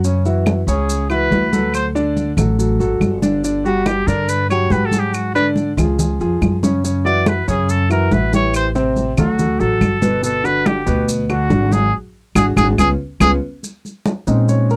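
A straight 4/4 groove at 141 BPM drives this sultry Afro-Cuban jazz excerpt in F# minor, with bright, damped congas struck by hard hands, mellow grainy maracas and background claves, all over a growly, thumpy pizzicato upright bass. A clear, vintage-toned trumpet with vibrato takes an up-front solo from 0.7 seconds, and the band hits an accent from 11.9 seconds. At 13.6 seconds a warm concert grand piano, with deep bass and audible action noise, steps forward for a brief solo in a dry, close, 1970s-style studio sound.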